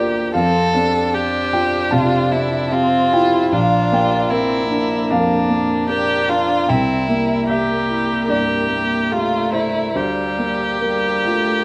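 A focused, vibrato-laden solo violin sings an intimate, hopeful melody up front in this rubato neoclassical excerpt, supported by a smooth, even bowed viola, a woody upright piano with long sustain, and a reedy, breathing pedal harmonium holding sustained chords in the background, all within a light reverb.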